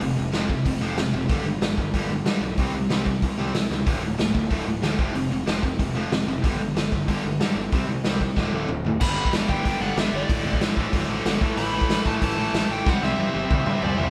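Punk rock at 187 BPM, upbeat and rowdy, cut from a longer piece, with overdriven and tight distorted guitars driving power-chord riffs over a growly fuzz bass and a raw garage drum kit that sits up front with a punchy kick and rolled-off top, all in a live room with light reverb. After drum fills at 3.7 and 8.4 seconds, the harmony shifts from power chords to G, D, A and C chords at 9.0 seconds, where a dark, smooth overdriven lead guitar takes the high melody and a very quiet double-tracked distorted guitar joins the riff. A final drum fill closes the passage at 12.9 seconds.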